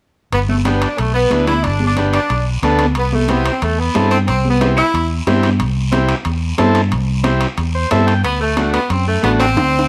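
Cumbia at a brisk 182 BPM in G major, this festive, joyful excerpt from a longer piece sets a clear, jazz-style saxophone section with light vibrato up front on the melody, pausing after 5.1 seconds, over a dark, round and punchy fingered electric bass. A buzzy, overdriven vintage combo organ comps prominently and drops in a short fill at 7.6 seconds, just before the saxophones return on a D7 chord at 8.2 seconds. In the background sit bright, high-tuned congas, ringing metal-shell timbales and a raspy, distant guiro, all under light reverb, with a quick drum fill closing it out.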